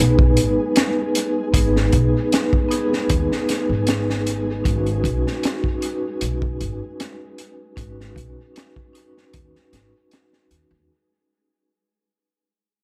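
A ringing, metallic vibraphone with tremolo, lo-fi sampler grit and tape echo starts this smoky, brooding trip hop fragment together with a woody pizzicato upright bass and a grainy, flickering texture that sits in the background with its own reverb. At 0.2 seconds a crunchy, saturated breakbeat kit enters up front, with a punchy kick, a high-tuned snare, hi-hat and dub echo, its top end rolled off to keep it dark. The harmony moves from G#m to Badd9/G# in an echo-heavy small-room mix that fades out across its entire length.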